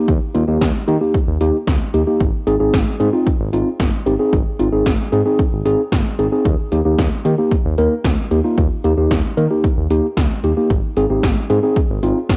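Nostalgic and upbeat, this short synth-pop excerpt moves at 113 BPM in a straight 4/4, centred on Eb major with a slightly sharp tuning of A4 = 441 Hz. A mellow tine electric piano carries the accompaniment up front, its clean, direct tone softened by a cassette tape character as it sits between Bb3 and Bb4. Beneath it, a smooth synth bass blends sawtooth and triangle colours with a fast attack and sustained notes, reaching down to G1. The 80s electronic pad drums are analog and overdriven, with a punchy kick, gated snare and metallic hats, re-recorded in a small room and placed up front with their own cassette grit. The harmony simply alternates between Eb and Ab, and a moderate spring reverb with a home-recorded cassette feel lends the whole a hazy, homemade glow.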